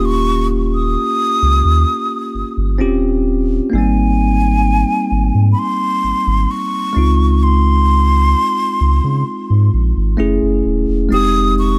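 This contemporary R&B piece, cut from a longer work, moves at an unhurried pace with a sensual, moody feel. A breathy concert flute carries the melody high in its register, tongued and expressive with vibrato and lifted highs, and a digital delay trails behind its phrases. A bell-like tine electric piano supplies bright, clean accompaniment in the middle register. Underneath, a deep, round sub bass with a sine-like tone, fast attack and mellow sustain anchors the low end. All three parts sit up front in a small room ambience. The harmony drifts from Eb7 through Abmaj7 and Dbmaj7 to a closing turn onto Gbm9 at 10.2 seconds and Fm9 at 11.1 seconds.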